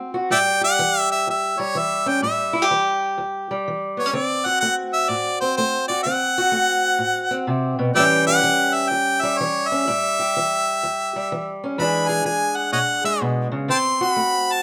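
A bright, punchy harmonica takes the lead from 0.3 seconds, singing up front with light vibrato, scooped notes and tongue slaps in a jazz-tinged solo over a chord run from A7 through D7 and E7. Beneath it, a dark, boxy parlour-style steel-string acoustic guitar fingerpicks the accompaniment from the very start, both parts sharing a plate reverb in a moderate room. This swaggering, soulful acoustic country blues excerpt swings at 126 BPM in 4/4, with the rough feel of a home demo.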